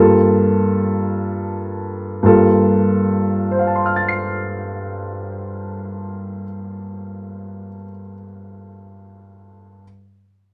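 A lone grand piano opens the recording on a G minor seventh chord, slowing down through its first 2.2 seconds before settling into a slow jazz ballad pace of roughly 46 to 58 beats per minute. The mood is melancholic and intimate, carried in 4/4 with a gentle swung feel on the eighth notes. The piano sounds warm and natural, sitting up front and ranging from deep G2 bass notes to bright C7 heights. The sound is dry and close, like a 1970s studio session, with little reverb around the instrument. This short passage, cut from a longer piece, moves from its opening phrase into a new section at 2.2 seconds, and the piano plays alone until it stops at 9.8 seconds.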